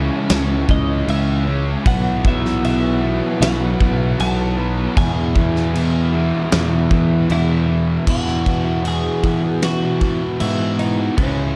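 Dreamy and wistful, this short rock cut from a longer shoegaze and dream pop piece moves at an unhurried, straight pace in 4/4, drifting from C#m through Bsus4 to E before settling on Esus2 at 8.1 seconds. Three guitars play riffs in the background from the start: a bright, double-tracked cranked stack guitar with overdrive, an overdriven semi-hollow guitar with a hollow-body tone washed in reverse reverb, and a thick fuzz guitar whose distortion is coated in lush chorus. Up front, an overdriven picked electric bass gives a dark, round, direct low end, while a huge arena drum kit with a punchy kick, fat snare and crash cymbal rings out in a big room. A clean, twangy twelve-string electric guitar carries the melody from 0.7 seconds, compressed and touched with slapback echo. At 2.6 seconds an airy, breathy pad enters very quietly, its slow-attack sustained chords adding a soft, chorused haze beneath the band in a dark production with little reverb.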